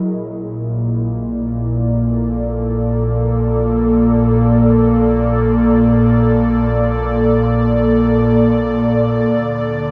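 Serene and weightless, this short ambient passage floats in free time, with a breathy, detuned sawtooth pad up front holding sustained chords through a chorus, moving from A#maj7 to D5 at 9.3 seconds. Beneath it, a round sine sub bass with a touch of tube saturation fades in across the full 9.9 seconds. Both sit in a huge, wet reverb with an 8.1-second tail, so the sound feels vast and suspended.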